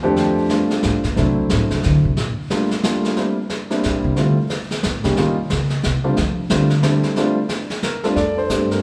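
An upright bass, woody and thumpy with gut strings, takes a pizzicato solo from 0.2 to 8.2 seconds in this swinging jazz piano trio fragment in F major at 180 BPM in 3/4, with an up-front grand piano carrying the melody over changes like F6, D7, Gm7 and C7, a distant, roomy brush kit with a punchy kick and rolled-off top entering at 0.2 seconds, and a wet, lingering recital-hall reverb around the whole trio.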